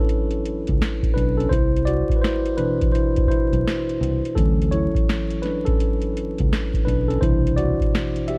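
Dark, warm production dusted with vinyl crackle frames this cosy, dreamy lo-fi hip hop fragment cut from a longer piece, where a clean tine electric piano, up front and colored by cassette tape and a low-pass filter, plays solo throughout over Dmaj9 and Cmaj9 chords, backed by a swung, booming analog drum machine with a deep kick, crisp snare and metallic hats, while a round fingered electric bass enters at 0.7 seconds and stops at 7.7 seconds.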